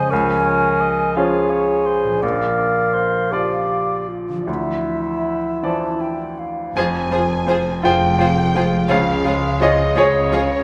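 Cinematic, emotional orchestral film score in F minor, moving and full of longing, unfolding in a rubato 6/8 at around 52-57 BPM: a bright, up-front baby grand piano with audible action noise and a ringing, thumb-plucked concert harp accompany a dark, distant clarinet, a mellow cor anglais and an airy silver flute in the opening seconds, until at 6.8 s a lush, expressive violin section takes the melody over a second violin line, background violas and cellos, and double basses, all bowed with vibrato, while a generous concert hall reverb surrounds the sound.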